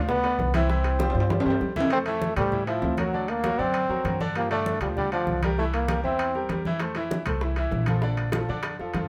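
Joyful and sunny, this brisk salsa at 196 BPM in F major features a clear, up-front trombone carrying the melody with light vibrato and scooped notes until 6.6 s, over a bright baby grand piano with audible action noise, a woody, thumpy pizzicato upright bass, thick-skinned, low-tuned congas, ringing metal-shell timbales and round bongos in the background that drop out after a drum fill ending at 1.9 s and return at 6.8 s, set in moderate studio reverb.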